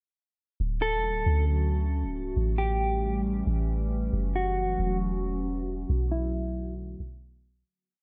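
Atmospheric cloud-rap hip hop in D major at 136 BPM with a half-time feel, floating and blissful, moving through Dmaj7, A7, F#m7 and Bm7 as a short breakdown under a filter sweep before fading out from 5.9 seconds. A warbling, nostalgic tape-like pad holds slow-attack chords with chorus, phaser and reverb, while a soft, round 808-style bass sits up front with long sub notes and pitch slides. From 0.8 seconds a clean, fingered electric guitar loops a sparse, repeating melody through a low-pass filter and tape echo, like a sampled phrase.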